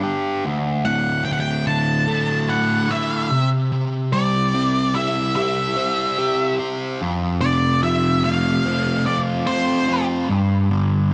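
Rock with a hypnotic, trippy mood, this short cut from a longer piece sets a double-tracked, compressed fuzz guitar riff, thickened by distortion and phaser, alongside a dark octave-fuzz lead melody with tape echo that enters at 0.9 seconds and stops at 10.0 seconds, both up front in a dry, close 1970s-style studio sound over chords moving from Dsus2 through C and F to a closing G5.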